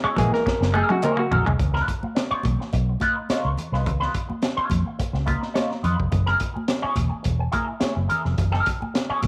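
An overdriven, stringy clav opens this energetic, gritty funk clip with a short solo of stabs that ends by 1.4 seconds, while the crunchy breakbeat kit plays a drum fill. The groove sits at 106 BPM in a straight 4/4, built on a dark, foam-muted vintage fingered bass that sounds round, punchy and up front. An electric guitar through an envelope filter adds clean, twangy, compressed wah accompaniment through the whole cut, and a bright semi-hollow guitar plays a brief picked riff at the very start. The saturated drums have a tight kick, a high-tuned snare and a rolled-off top. Ringing, high-tuned congas sit in the background, and a very quiet group handclap adds a hollow accent. The harmony moves from Gb9 to Db9 at 1.6 seconds and back to Gb9, all set in a moderate spring reverb within a studio space.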